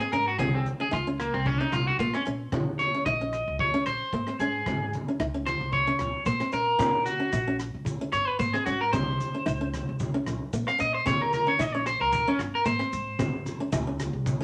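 An up-front, twangy electric guitar at the edge of break-up plays arpeggios while a clean electric guitar solo runs through this warm, bittersweet 112 BPM highlife guitar band excerpt, backed by bright fingerpicked nylon-string guitar, woody pizzicato upright bass, a dry, dark 70s drum kit with a fat snare that closes on a fill at 14.3 seconds, distant low-tuned congas, and a grainy shekere that joins in the background at 6.3 seconds, all in a moderate studio reverb over a lightly swung 16th-note feel and chords moving through Abadd9, Dbsus2, Bbm and Eb5/Bb.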